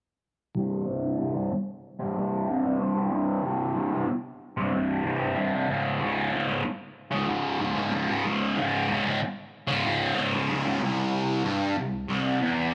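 A straight 4/4 rock pulse at 94 BPM carries this mysterious, trippy passage, cut from a longer piece. A lone fuzz guitar plays throughout, from 0.6 to 12.7 seconds, picked in a low register, double-tracked and compressed, sitting up front in the mix. Its bright, distorted tone passes through a phaser and a low-pass filter, and a filter sweep colours the part until 10.8 seconds. The harmony moves from C5 to Db5 and then settles on C as a brief new section begins. Light reverb and a digital ambience give the guitar a faint sense of space.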